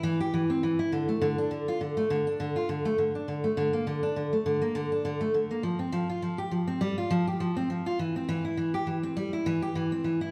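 A fingerpicked steel-string dreadnought acoustic guitar plays alone and up front for the whole 10.3-second fragment, its tone bright and full-bodied. This short folktronica passage sits in F major at 102 BPM in 4/4, with a light swing on the sixteenth notes that gives the picking a relaxed lilt. The guitar stays in a modest register between D3 and G4, keeping the mood delicate and warm. A wet recital hall reverb surrounds the instrument, lending the sound a sense of space as the lines ring into the room. The clip is taken from a longer piece and holds to a single section throughout.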